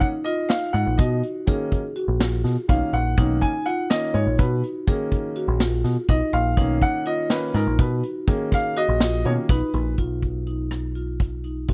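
Set in a straight 7/8 at 247 eighth-note beats per minute, this driving progressive instrumental cut from a longer piece moves with a restless, uneven pulse in a bright B lydian. A clear, slightly boxy baby grand piano takes the spotlight with a solo over a sustained Bmaj7 harmony, sitting up front alongside a mellow, soft-mallet marimba playing close-miked arpeggios. The acoustic street-band drum kit anchors everything with hi-hat, rim clicks, a medium-tuned snare and a boomy kick, its polished, airy sound carrying a sense of a big room. A dark, punchy picked electric bass with a round, direct tone joins at 0.7 seconds, along with a grainy egg shaker tucked in the background. The piano and shaker drop out at 9.9 seconds, and at 10.0 seconds the harmony settles onto a plain B chord, all captured in a dry, close 1970s-style studio sound.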